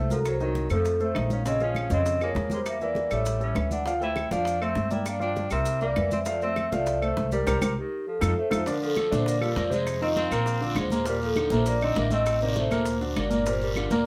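A lively, danceable Afro-Cuban jazz groove in straight 4/4 carries this snippet from a longer piece, with damped, high-tuned congas, tight bongos and woody claves tucked in the background alongside close, dry, grainy maracas, beneath a thumpy, pizzicato upright bass that sits up front, while a mellow, ringing vibraphone with soft mallets takes the melody over an intimate grand piano with audible action noise and a breathy, whispered tenor saxophone adds a second line with vibrato, the band hits a shared accent from 7.5 s with a drum fill at 8.2 s, and a raspy guiro joins at 8.7 s as the harmony moves to a new section, all in a live, moderately reverberant room.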